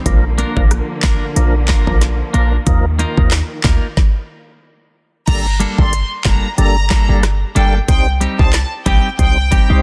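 Dancehall at 92 BPM in G minor with a bouncy, sultry swing, this excerpt sets an up-front electronic kit of knocking kick, woody snare, smooth hats, crash, handclaps and rim clicks over a punchy, tight 808-style bass, while a fat, lightly overdriven tonewheel organ with key click, chorus vibrato and slow rotary speaker and a twangy clean electric guitar playing picked, spring-reverbed arpeggios fill the middle, lush bowed strings pump in the background until a stop at 4.0 s, and from 5.3 s a pure, floating violin section carries the melody with tape echo, all in a dense, heavily limited modern master.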